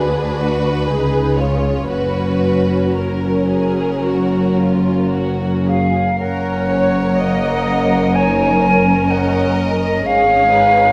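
A tender, slow romantic orchestral passage in F# major at a rubato 54-66 BPM opens with bowed strings together: a close, smooth violin section carrying the melody over a second violin line with a soft attack, a focused viola accompaniment, a rich cello bass and an expressive, distant double bass, all singing with vibrato in a wet scoring-stage reverb, before an airy, straight-toned flute with a crisp attack enters at 5.7 seconds on a second line above them.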